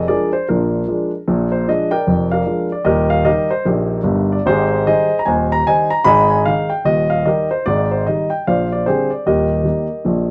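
Exuberant and playful, this brief stride piano passage from a longer jazz piece bounces along with a swung feel in 4/4. A single warm grand piano carries the whole 10.3 seconds alone, sitting up front in the mix and reaching from deep in the bass register up to bright upper notes. The harmony opens on a Bb7 over F, settles home on Eb, then moves through Abmaj7 and Ab5 before a Bb13 turns it back to Eb at 9.2 seconds. A moderate studio reverb adds a touch of room around the instrument, keeping the sound close and lively.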